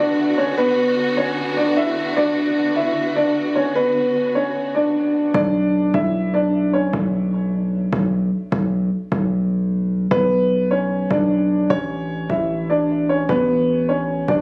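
Eerie and hard-hitting, this half-time trap cut at 151 BPM in B minor opens with a boxy, mellow grand piano melody, run through a low-pass filter and digital delay, over lush bowed symphonic strings with expressive vibrato until 5.3 seconds, when a heavy, distorted 808-style bass with a noise layer takes over beneath the up-front piano, which pauses between 6.9 and 10.1 seconds, all caught with a phone-in-the-room feel and light reverb.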